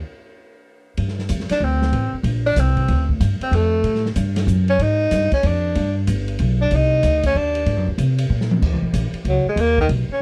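Moody and swinging, this small-group jazz piece in G minor moves at a brisk 188 BPM in 3/4 and is cut from a longer performance, opening with a one-second break before a woody, thumpy pizzicato upright bass and an acoustic drum kit with dark cymbals and a boomy kick come in at 1.0 seconds. A tenor saxophone with vibrato and a soft attack carries the melody from 1.5 seconds, sounding roomy and distant yet up front, while the chords wander through shifting colours. After a drum fill, the saxophone takes a solo at 8.6 seconds, all set in a dark production with light reverb.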